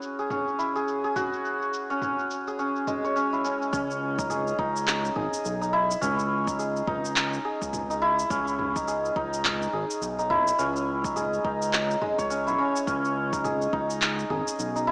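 A small-speaker sound with a moderate concert-hall reverb frames this hypnotic organic downtempo excerpt in C# minor at 105 BPM, where a shimmering, ringing santur plays up-front arpeggios through digital delay over an overdriven organic electronic kit of handclaps, shaker and toms re-recorded in a large room, joined at 3.7 seconds by a deep, layered electronic kick and a smooth, evolving synth bass with tube saturation, vibrato and sidechain pumping as the harmony moves from C#m to C#m7.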